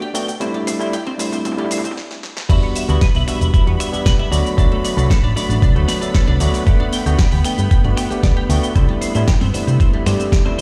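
A stone-room reverb and the boom of a big system in a bare space frame this sleek, sensual nu-disco excerpt in E minor at 115 BPM, where a barky, overdriven tine electric piano pumps against the sidechain with digital delay, a rich bowed string section holds smooth vibrato chords, and a twangy, chorused twelve-string electric guitar picks out a riff over a punchy electronic house kit of snaps, shaker, toms and bright hats. The opening is a build-up with drum fills, a filter sweep on the electric piano and a stop from 2.0 seconds. At 2.5 seconds the drop lands as a gritty, thumpy overdriven kick up front and a dark, round picked bass with an envelope filter enter over chords moving from Em7 through D and Gmaj7 to C6.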